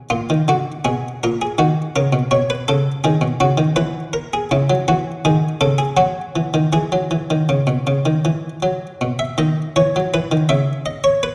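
A muted, lute-like Flemish-style buff-stop harpsichord plays alone, plucked and up front, through this joyful, elegant excerpt of a baroque-style two-part invention at 81 BPM in 3/4, settling into E major from 4.5 s and moving to a new section at 9.0 s, all set in the lingering reverb of a scoring stage.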